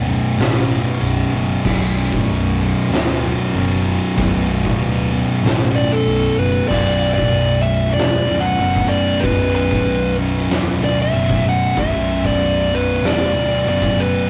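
A rough rehearsal-room recording with tube saturation and a moderate small-room reverb, this stoner and doom metal piece is cut from a longer track and sits at 95 BPM in 4/4, hypnotic and ominous on a single B minor chord. Two thick, fuzzed-out guitars pick the low riff throughout, one up front and one in the background, while a double-tracked, compressed fuzz guitar also plays a riff in the background until it drops away at 6.7 seconds. A hollow-body short-scale electric bass, picked and amped with overdrive, adds a round, hollow low end. An oversized, low-tuned acoustic kit enters at 0.4 seconds with a boomy kick, fat snare, hi-hat and shadowy crash, all saturated and gritty in a bright stone room. At 5.8 seconds a compressed, dark-toned fuzz lead guitar steps up front with a distorted melody trailed by analog delay.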